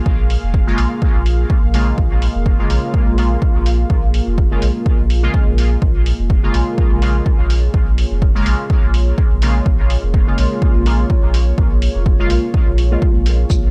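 Dub techno in Bb minor at 125 BPM, this cavernous, hazy passage, cut from a longer piece, rests on a single Bbm7 chord with a light 16th-note swing. A dark analog pad holds sustained chords throughout, its detuned sawtooth and sub-octave layers giving a moody, full-bodied, evolving bed that breathes with chorus and sidechain pumping. Beneath it, a soft dub sub bass sits deep and round between F1 and Bb1, pumping with the sidechain, while the punchy, overdriven kick stands up front in the mix. A muffled, pitched-down hi-hat and shaker adds a tape-warm texture at low level from 0.3 seconds. From 0.7 seconds a resonant polysynth plays juicy, warbling stabs with filter sweeps, colored by chorus, phaser and dub echo. The production is dark and dry, with little reverb.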